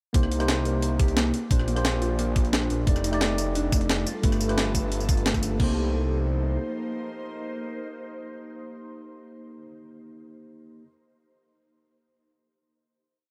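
A menacing, detuned sawtooth bass sits up front in this short liquid drum and bass piece, its saturated, evolving tone swelling through a filter and stretching into long gliding notes before it drops out at 6.6 seconds. Alongside it, a knocking, layered electronic kick and a gritty, pitched-up jungle kit of tambourine, closed hat, rim, snare and crash drive a rolling two-step groove through the drop, with the kit overdriven and compressed and set in a large room. A clean tine electric piano, carrying vintage sampler grit and tape echo, holds drop-2 chords with syncopated pushes over a Cm7, Bb69, F13 and G9 progression. In the background, a soft, harp-like pluck with chorus and tape echo rings out a six-step arpeggio loop that drifts against the bar. From 4.1 seconds an ethereal, bright pad with ensemble chorus, phaser and its own reverb fades in on slow-attack chords, and the electric piano carries the final Cm7 to a close at 10.8 seconds for a lush, dreamy finish.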